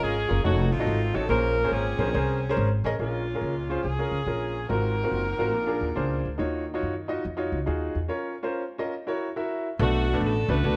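A worn, warbling cassette-tape sound with a drifting pitch wraps this uptempo gospel fragment, set in a light studio reverb. The groove runs at 141 BPM in 4/4 with a swung eighth-note feel, and the mood is soulful and fervent in B-flat minor. A close-miked saxophone section carries the melody with a bright, pop-style tone and light vibrato, drops out at 6.2 seconds and returns at 9.8 seconds. Underneath, an upright piano plays the accompaniment throughout in a brilliant, woody voice with long sustain. A pizzicato upright bass anchors the low end with a growly, thumpy, dark sound. All three parts sit up front, moving through harmonies such as F7b9b13, Bbm9, Ab13 and Ebm9 before landing on Bm7 at the cut.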